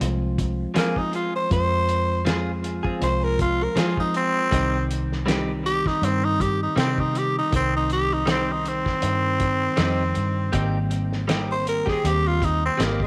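A small room with light reverb gives this smoky, soulful 80 BPM soul blues excerpt in C minor an intimate, lo-fi feel, with a cloth-damped drum kit thudding out a fat snare and tight kick beneath a dark, round, foam-muted fingered electric bass and a mellow tine electric piano moving through Fm, Cm and Abmaj7. Up front, a raspy, growling tenor saxophone takes the solo from 0.8 s, with scooped notes and light vibrato. A clean, compressed electric guitar, recorded direct, adds picked stabs from 0.7 s through lush chorus and tape echo.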